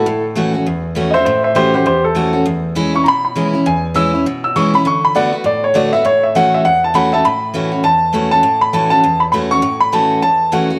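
A warm, woody upright piano carries the melody up front with polished tone and long sustain, over a picked steel-string dreadnought guitar whose old strings give a full-bodied accompaniment, in a rollicking, retro rock groove at 201 BPM with a swung feel in A major. The piano takes a solo through the first 7.2 seconds as the harmony moves through A6, E6 and D6 before returning to A6, and a new passage begins at 7.2 seconds and runs to the end of this 10.8-second cut from a longer piece. A moderate echo-chamber reverb and small room ambience frame the sound.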